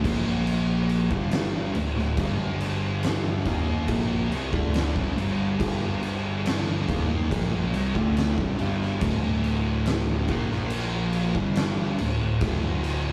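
An oversized, low-tuned acoustic drum kit sits up front in this brooding, hypnotic stoner and doom metal passage, with a fat snare, a punchy kick and dark cymbals, including crash, all carrying a gritty, saturated edge. Beneath it, an overdriven picked electric bass growls, bright and amped, holding down the bass line for the full 13 seconds. Three picked fuzz guitars play the riff together: one thick, distorted part sits in the background, a second thick part is very quiet, and a double-tracked, compressed fuzz guitar is also very quiet, giving the layered riff a warm haze. The riff moves through Bb5, D5 and G5 power chords at a slow, straight pulse in 4/4, returning to D5 and Bb5 near the end. A moderate small-room reverb and tube saturation lend the whole a rough rehearsal-room character, and the passage is cut from a longer piece.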